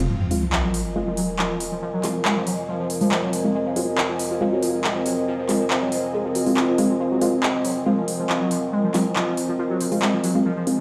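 Industrial and intense, this excerpt of driving peak-time techno runs at 139 BPM in a straight 4/4, sitting on an F minor chord and tuned to A4 = 438 Hz. A gritty, screaming synth lead built from sawtooth and pulse waves carries the riff from the very start, its distorted, guitar-like tone shaped by phaser, tube saturation, analog chorus, delay and a touch of vibrato. Around it, an airy, breathy pad adds a soft triangle-and-noise texture with a moving notch, while a sub drop hits as an impact through the opening until 1.8 s. The techno drum kit arrives at 0.3 s, layered and up front with handclaps and smooth hi-hats roughened by overdrive and a small room reverb, alongside crisp, detuned wavetable chord stabs that pluck and decay in the background through cassette tape and delay. From 1.5 s a deep, moody dark ambient pad drones with a sub octave, slow attack and long release, all set in a huge, lingering ambient reverb that sounds like a big sound system playing in a bare room.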